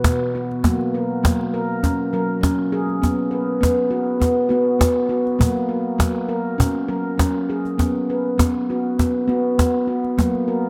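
Gentle and calm, this meditative world fragment at 101 BPM in 4/4 with a light 16th-note swing pairs ringing, mellow stainless-steel handpan arpeggios from B2 to B4, played with soft fingertips up front in a boxy small room, with a snappy, close, dry acoustic cajon with snares under soft hands, both parts trailing dub echo in an echo-heavy mix bathed in wet spring reverb as the harmony alternates between B5 and F#.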